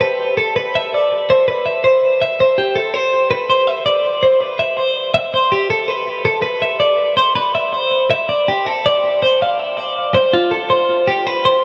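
A bright, twangy twelve-string electric guitar plays alone from start to finish, its clean, picked, compressed tone sitting up front and spanning F4 to F5 through an analog delay. The rock piece moves at 163 BPM in a straight 4/4, tuned to A4 = 441 Hz, with a playful yet wistful mood and a new section arriving at 8.8 seconds. A huge ambient reverb with a 7.5-second tail soaks the short extract in a dreamy haze.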